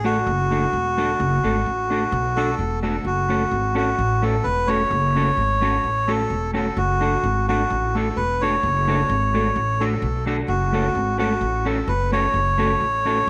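Mischievous and driving, this ska cut moves at 129 BPM in a straight 4/4, set in F# minor and taken from a longer piece. A reedy, breathy melodica carries the tune up front, its nasal, smooth voice sitting between F#4 and C#5. Beneath it, a dark, clean electric guitar plays fingered accompaniment, colored by analog chorus and a slapback echo. The upright bass, plucked pizzicato on gut strings, gives a woody, thumpy low end that also sits up front. The harmony alternates between D and F#m, with the change to F#m at 3.0 seconds opening a longer passage that runs to the close. A moderate plate reverb with a long 3.4-second tail wraps the three players in a roomy glow.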